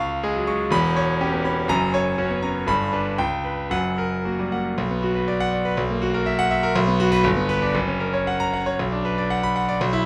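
A bright concert grand piano opens this stormy, passionate classical study in B minor. It is a solo virtuoso piece in 2/4, taken with rubato at roughly 110-126 BPM, reaching from deep bass notes up into a brilliant, polished treble. Around 4.8 seconds the music settles onto B minor for a new section that moves on to close on the same chord, all captured by close, detailed microphones that keep the piano present and up front in a light reverb, in a passage cut from a longer work.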